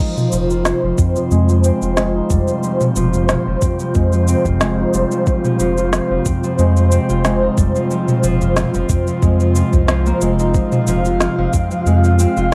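A lightly swung 91 BPM groove in 4/4 carries this meditative, hypnotic organic downtempo fragment in F minor, where an airy, breathy pad with chorus and sidechain pumping holds Fm from the start, a bright, fingerpicked Celtic harp rings out arpeggios through tape echo and a filter sweep, a round, deep analog bass enters at 0.3 seconds pumping up front, a tape-warm electronic kit with woody snare, shaker and toms joins at 0.2 seconds, and a soft electronic kick and a small, distant udu play from 1.0 to 11.7 seconds, all set in moderate reverb with a homespun cassette character.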